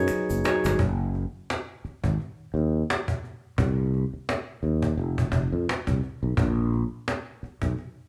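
A swung sixteenth-note pulse at 86 BPM in 4/4 sets a smooth R&B and neo-soul groove in this short cut from a longer piece. A cajon with woody, soft-handed hits and faint snares sits up front for nearly the whole clip, opening with a fill that runs from 0.1 to 0.8 seconds. During that fill, close, dry finger snaps and a tube shaker join briefly. A barky tine electric piano, clean through a combo amp, voices an F#sus2 chord at the start. A barely audible dark, hollow-body archtop guitar adds a picked second line. The growly fretless electric bass, bright and direct, carries the low end through Cm and F5 before the harmony drops out at 6.4 seconds, all inside a moderate studio reverb that gives the live band a shared, warm room.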